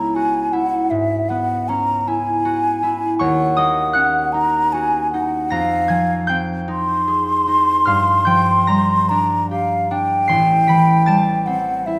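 Opening together, an airy, hollow concert flute with vibrato and a soft attack sings a dreamy, pastoral melody over a bright, ringing, fingerpicked concert harp in this slow, rubato impressionist duo in 12/8 at 48-54 BPM, both parts up front in a wet scoring-stage reverb as the harmony drifts from F#11 over C# through a chain of minor seventh chords to Am7.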